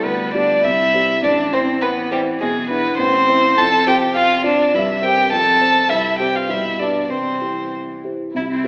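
All four players begin together in this quick, restless classical-period movement for piano quartet, a short stretch cut from a longer piece, with a rubato feel that gives its 2/4 pulse an urgent push. Up front, one violin carries the melody with a warm, airy sul tasto tone, light vibrato and soft attacks, sounding close and intimate. A second violin with a rich, similarly soft-edged bowed sound plays a supporting line beneath it and drops out at 7.7 s, while the cello adds its own second line from further in the background. The baby grand piano supplies a dark, mellow accompaniment, smooth and vintage in character, with its action noise audible. The chords move from G7 over D through C, A minor and E7 before settling through F and G back onto C, and the whole performance is heard from further back in a reverberant recital hall with an AM-radio coloring.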